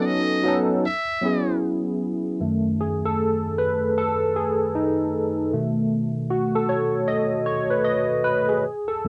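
A slow 4/4 groove at 77 BPM swings its sixteenths, setting a sultry, smooth R&B mood in F# dorian in this short cut from a longer piece. A muted trumpet opens the melody up front, buzzy and thin with light vibrato, breathy scooped notes and a slapback echo, phrasing in a jazz style before dropping out at 1.6 seconds. Alongside it, a barky tine electric piano, lightly overdriven through a combo amp with analog chorus, accompanies over B9 and E69 chords. From 2.4 seconds the electric piano takes over as the solo voice, moving through F#m6 and B7 to the end at 9.1 seconds. The sound is dry and close, like a 1970s studio session, with light reverb and a faint mains hum in the background.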